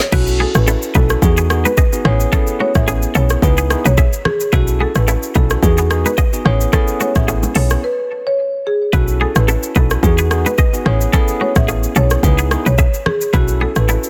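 Sunny and romantic, this afrobeats excerpt at 109 BPM with a light 16th-note swing sets a dark, smooth marimba melody with tape echo over a punchy, woody log drum bass, joined by a produced electronic drum kit with deep kick, soft-clipped snare, metallic hats and shaker, bright bongos and congas in the background, bell-like tine electric piano chords and a twangy, scooped electric guitar riff that also carries tape echo, the mix dense and heavily limited, with a brief break at 7.8 seconds before the B7sus4-to-Emaj7 progression resumes at 8.9 seconds.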